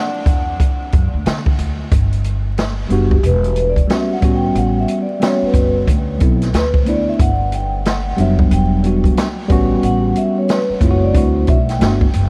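Over a bed of vinyl crackle and light studio reverb, this relaxed, swung jazz-hop excerpt opens with a metallic, ringing soft-mallet vibraphone melody carrying slow motor vibrato and a brief, breathy tenor saxophone line set back in the mix, joined at 0.3 s by a woody pizzicato upright bass and an up-front open jazz kit with a boomy kick; the vibraphone takes a solo from 1.9 s, and a worn, slightly out-of-tune tine electric piano enters at 2.9 s.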